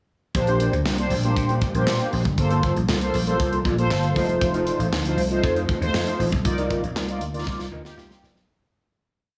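A straight 4/4 mid-tempo boogie beat at 118 BPM, with a punchy kick up front and a snare layered with handclaps over hi-hat, drives this feel-good, danceable early-eighties boogie funk piece in Bb major. Beneath it, a growly, fat slap bass line with chromatic approach notes supports round, detuned synth brass stabs in drop2 voicing colored by chorus and phaser, a clean, choppy sixteenth-note electric guitar in the background, and a silky, very quiet string machine pad, set in light small-room ambience as the chords move through Bb69, Gm11, F7 and Cm11 before a fade-out begins at 6.4 seconds and a drum fill arrives at 7.5 seconds.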